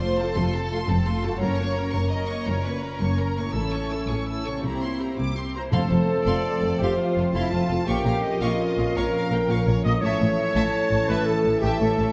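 A heroic, adventurous cinematic cue in 12/8 opens with a lush symphonic violin melody over a distant second violin line, background violas, mellow ringing harp arpeggios and a bowed bass of soft-attack cellos and focused double basses, joined at 0.2 s by present French horn chords. A soft-attack solo clarinet then enters at 5.5 s, followed by an airy flute group, dark, very quiet trombones and a brief hard-mallet timpani hit at 5.7 s that broaden the sound, all set in a wet scoring-stage reverb.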